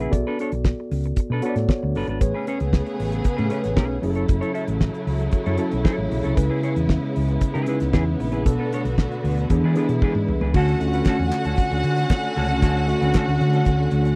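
A damped 70s drum kit sits up front with a fat snare, tight kick and dark, rolled-off cymbals, driving this celebratory, danceable disco cut at 115 BPM in a straight 4/4, tuned to A4 = 435 Hz. A round, amped hollow-body bass, a clean, scooped semi-hollow guitar and a worn, slightly out-of-tune tine electric piano move through Bm7, Amaj9, F#m7 and C#m7, with the piano adding a fill at 1.2 seconds and lush bowed strings entering at 2.2 seconds. After a drum fill, the harmony shifts to Dmaj7 at 10.5 seconds, where a distant, biting violin section adds a second line and crisp, compressed handclaps join in the background, all in a dry, close 1970s-style studio sound.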